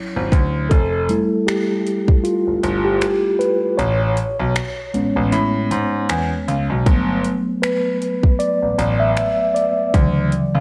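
Contemporary R&B at 78 BPM in 4/4 with a swung sixteenth-note feel, this short excerpt cut from a longer piece has a dreamy, romantic mood rooted in G lydian. A mellow tine electric piano carries the lead from the opening moment, clean and direct, moving through lush major-ninth chords such as Dmaj9, Fmaj9, Amaj9 and a rootless Gmaj9. Beneath it, a bright concert grand piano takes the bass role, its brilliant, deep low register sitting present and up front. An electronic trap drum kit enters at 0.3 seconds with finger snaps, metallic hi-hats and a hard-clipped kick, its produced sound carrying a tape-like character; the kick drops out between 3.8 and 6.9 seconds. The whole mix is soaked in a lush hall reverb, giving the up-front instruments a floating, dreamlike glow.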